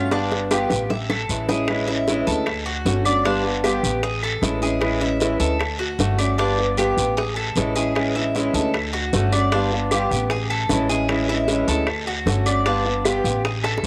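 A fingerpicked, up-front nylon-string guitar with audible finger squeak and a bright, metallic Cuban tres arpeggiating on doubled strings open this relaxed, warm Cuban son and guajira fragment over a dark, thumpy pizzicato upright bass, as tight, high-tuned bongos enter at 0.1 s with a fill alongside a raspy guiro and are soon joined by distant, woody claves from 0.5 s, the music cycling through Amaj7, Dmaj7 and G7 with a cassette-tape haze on the guitar and tres and a moderate spring reverb around a small room.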